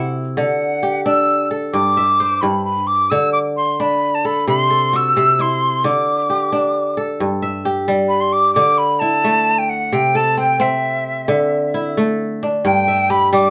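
Set in 12/8 at 88 beats per minute, counted in dotted quarters with a straight feel, this joyful West African traditional piece in G major is a short passage taken from a longer performance. A fingerpicked kora carries ringing arpeggios from G2 up to E5, its acoustic tone warm and crisp and placed up front. Above it, a silver concert flute sings the melody between E5 and E6, airy and bright with a crisp attack, vibrato and a somewhat unsteady quality, also sitting close to the listener. Both instruments play together from start to finish. The harmony moves through D, G5, D5 and C before returning to D5, then shifts at 7.2 seconds to a Gsus2 before cycling through D5, C and D5 to close on G5. The two players share one room with a moderate studio ambience, giving the performance an easy, live sense of space.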